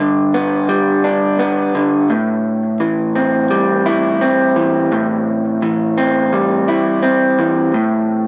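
An electric guitar played through a small old amp carries this short rock fragment alone from 0.0 to 8.3 seconds. Its tone is slightly broken-up and lo-fi, fingered rather than picked, compressed and placed up front, with an analog delay trailing its notes. Set in A minor at 85 BPM in a straight 4/4, the playing stays between G2 and E4 and moves from a G chord to Am7 at 2.1 seconds before the harmony falls away at 7.7 seconds. Light reverb and a digital ambience surround the guitar, giving the cut a cathartic yet melancholic mood, as if lifted from a longer piece.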